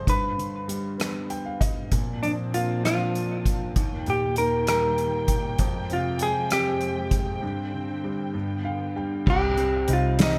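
In a small room, this melancholic and dramatic six-eight pop ballad in C minor at 65 BPM sets a dark, up-front hollow-body jazz guitar melody with tape echo over a clear, woody upright piano with audible action noise and a soft-mallet drum kit with a punchy kick, while a lush, sul tasto string section sustains chords from 1.9 seconds, a piano fill and break lead into the closing C minor at 9.3 seconds, and there a scooped, direct-recorded clean electric guitar adds echoed arpeggios in the background over a round, foam-muted fingered bass.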